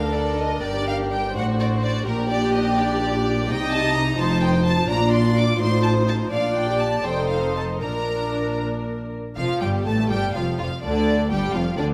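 A lively, cheerful classical-period movement for string orchestra opens with the full ensemble together in Bb major, a rubato 6/8 moving at 76-86 dotted-quarter beats per minute. Violins carry a pure, floating melody above a second violin line, while violas with light vibrato supply intimate accompaniment and dark cellos join rich double basses on the bass, every section bowed sul tasto with a soft attack. A moderate scoring-stage reverb gives space to this short passage from a longer piece, whose harmony settles onto a rootless Ebmaj9 at 10.8 seconds.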